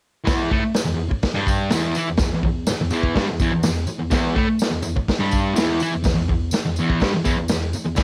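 A double-tracked fuzz guitar, bright and distorted with cassette-tape grit, drives a riff on an E5 chord in this raw, swaggering garage rock excerpt at 124 BPM, backed from 0.3 seconds by an up-front vintage drum kit with a punchy kick and a rolled-off top and a jingly tambourine, all set in a small home-recorded room.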